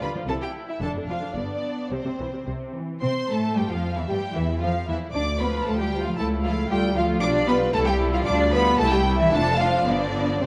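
Through worn, warbling old cassette tape with drifting pitch and a wet scoring-stage reverb, a lively, graceful classical-period movement for string orchestra moves quickly at 113 BPM in 2/4 in C major, with a lush, up-front first violin section carrying the melody over a clear second violin line, a rich viola accompaniment, and a warm cello section and focused double bass section sharing the bass, all bowed with vibrato in this 10.5-second cut from a longer piece.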